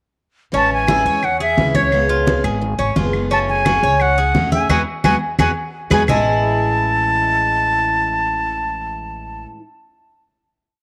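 Danceable and relaxed, this complete Cuban son and guajira piece in A major moves at a straight 173 BPM in 4/4. An up-front, breathy silver concert flute sings short, song-like motifs over a metallic, double-strung tres playing an arpeggiated guajeo and a fresh-stringed steel-string acoustic guitar strummed with muted slaps and audible finger squeak. Beneath them, a thumpy, dark gut-string upright bass plays a pizzicato tumbao that anticipates the chords, while low-tuned, thick-skinned congas mix slaps and open strokes and woody claves tap a two-bar time line in the background. A band accent at 4.7 seconds leads to a final Amaj7 chord at 6.1 seconds, where the congas and claves stop, all of it bathed in a moderate spring reverb.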